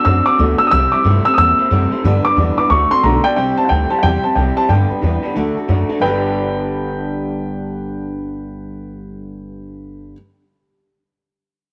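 Moderate spring reverb gives this rockabilly cut an echoing, roomy sound, with the upright piano and upright bass placed up front. The mood is rowdy and upbeat, carried by a swung 4/4 feel. The dark, woody piano plays the melody high in its range, its notes ringing with long sustain. Beneath it, a full-bodied jumbo steel-string acoustic guitar is picked for accompaniment with audible finger squeak, while an electric guitar through a small old amp plays a twangy, slightly broken-up, lo-fi riff. The gut-strung pizzicato upright bass enters at 0.1 seconds with a thumpy low end as the chords move between D, C and G, reaching G at 6.0 seconds in this passage cut from a longer piece.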